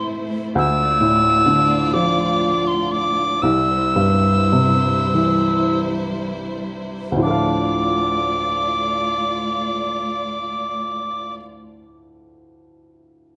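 A moderate recital-hall reverb surrounds this haunting, longing Celtic slow air in 6/8, cut from a longer piece and played with a rubato feel that slows from 0.6 to 7.2 seconds. Up front, a wooden whistle sings the melody in a pure, straight tone with a soft attack and lifted highs, over a woody upright piano and a quieter, lush bowed string section whose vibrato, portamento and smooth top give the sustained chords an expressive glow. The whistle and strings fall away at about 11 seconds, leaving the piano to ring on alone until 13.4 seconds.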